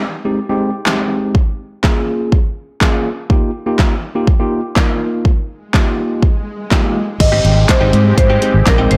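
Dance-pop in Ab major at 123 BPM, this carefree, upbeat passage is cut from a longer piece and opens on a clean tine electric piano heard through its built-in speakers, laying down chords from Abmaj7 to Db6 and Ebadd9. At 0.9 seconds a punchy, layered electronic pop kit arrives up front, with kick, fat snare carrying soft clipping, hi-hat, handclaps and crash cymbal, all re-recorded in a small room. A background swell and downlifter effect builds from 6.0 seconds, leading into a fuller section at 7.2 seconds, where the harmony returns to Abmaj7. There a marimba with medium hard mallets takes the melody, a dark, round, foam-muted vintage bass and an evolving detuned supersaw swell both pump against the sidechain, and a direct, compressed clean guitar picks a riff with subtle chorus. Light digital ambience surrounds a loud, blown-out mix with audible overdrive.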